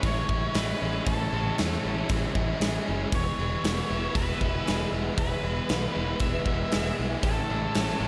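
A hazy, dreamy shoegaze and dream pop fragment in A major at 117 BPM opens at once with a big, natural-sounding rock drum kit up front, its punchy kick and medium-tuned snare driving a straight 4/4 beneath a growling, bright fingered bass with overdrive. An octave-fuzz lead guitar carries the melody through distortion and digital delay, while an overdriven, compressed guitar with reverse reverb and a thick fuzz guitar drenched in lush chorus, set in the background, play riffs, and a very quiet direct-recorded clean guitar adds arpeggios. A dark, vintage organ-like string ensemble with a soft attack holds sustained chords behind it all as the harmony moves from Amaj7 to E and back, with the drums stopping at 7.9 seconds just before the 8.1-second cut.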